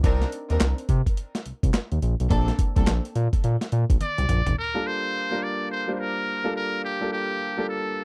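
Lush bowed string stabs with tape echo open this bouncy, punchy new jack swing clip at 106 BPM. They ride over a smooth, sawtooth-edged synth bass and a gritty, compressed boom bap kit with a thumpy kick, handclaps, hi-hat, snare and toms, swinging on 16ths over Cm9 and Bbadd9. As a drum fill begins at 4.0 seconds, a buzzy, brilliant muted trumpet melody with scooped notes and vibrato enters, while an intimate concert grand with audible action noise carries the accompaniment from 4.7 seconds as the harmony moves to Gm9, all in a dry, close 1970s-style studio sound.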